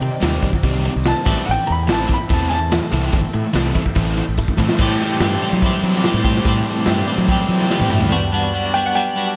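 An echo-heavy, lightly reverberant indie rock excerpt at 144 BPM in 4/4 with an upbeat, carefree mood, where a clear, woody upright piano with audible action noise carries a dub-echoed melody at the start and returns at 8.7 seconds, over a clean, compressed twelve-string electric guitar riff with tremolo, a very quiet, lush vintage string machine holding sustained chords, a growly fuzz bass, a sludgy overdriven guitar riff with chorus in the background, a gritty, saturated garage drum kit with a punchy kick and drum fills at 4.4 and 7.7 seconds, and a distant, jingly tambourine, moving through Cmadd9 and Am7 before settling on Gmaj7 at 8.1 seconds.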